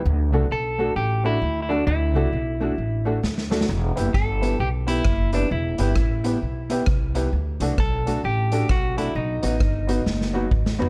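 A swung ska groove at 132 BPM in E minor carries this mischievous, energetic clip from a longer piece, anchored by a woody, pizzicato upright bass up front and a street-band drum kit with a boomy kick and airy, big-room sound that bursts in with a fill at 3.2 s, its hits touched by vintage 12-bit sampler grit. Over chords moving from D to Em, back to D and then B, a dark, hollow-body jazz guitar picks out accompaniment while a mellow upright piano, intimate with audible action noise, adds short stabs through tape echo. A clean, picked electric guitar carries the melody, also bathed in tape echo, all set in light reverb before a closing drum fill from 10.1 s.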